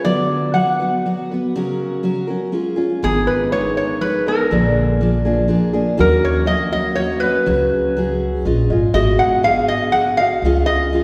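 A metallic, nasal resonator slide guitar, played with a steel bar and fingerpicks, carries a second line up front over a full-bodied, finger-squeaking picked dreadnought acoustic guitar in this nostalgic, hopeful acoustic folk piece in 3/4 at 122 BPM, with a woody, thumpy gut-string upright bass joining pizzicato at 3.0 seconds as chords like G#madd9, D#m7 and C#add9 pass beneath, all set in the long, wet reverb of a church or concert hall.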